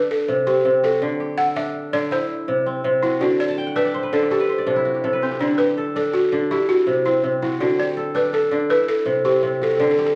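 A rolling 12/8 pulse at 109 BPM, counted in dotted quarters with a straight feel, carries this flowing, warm piece of West African traditional music, cut from a longer performance. The balafon takes the melody from the start, its woody, buzzing tone struck with rubber mallets and sitting up front in the mids. Beside it the kora spins fingerpicked arpeggios across a broad range, bright, crisp and ringing, also placed close to the listener. The harmony sways between C5 and D chords, briefly slipping out of any chord before the sway returns, and the kora steps forward with a fill from 3.5 to 5.4 seconds. Both instruments play through nearly the whole 10.2-second passage, wrapped in the generous reverb of a recital hall.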